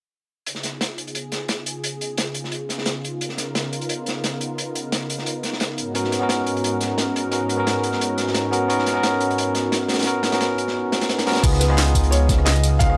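A dreamy, soulful liquid drum and bass passage, cut from a longer piece, opens at 0.5 s with a smooth, chorused analog pad pumping under sidechain against a gritty, saturated breakbeat kit of filtered hats and a medium-tuned snare. At 5.9 s a bell-like, clean tine electric piano enters up front with delay, adding sparkle over the sustained C#9 and G#m11 chords. The drop at 11.4 s brings in a deep, rumbling detuned saw bass, a knocking electronic kick, and a layered kit with a cracking snare, crisp hats, rim click, tambourine and crash, while a mellow, boxy grand piano with audible action noise carries the melody through tape echo in a lightly reverberant space.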